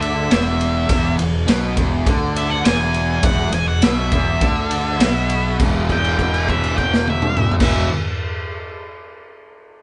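A dark, octave-fuzzed lead guitar solos through the opening 5.6 seconds of this swaggering, raunchy blues-rock and southern-rock fragment, then holds a single note until 7.6 seconds. Beneath it, a bright, double-tracked fuzz guitar picks out a low riff up front, while a growly, overdriven fingered bass adds its own fuzzy bite. A gritty, saturated garage kit with a punchy kick, medium-tuned snare, crash, ride and toms sits forward in a small, pumping room, and the whole band sounds captured live together with moderate reverb and a rolled-off top end.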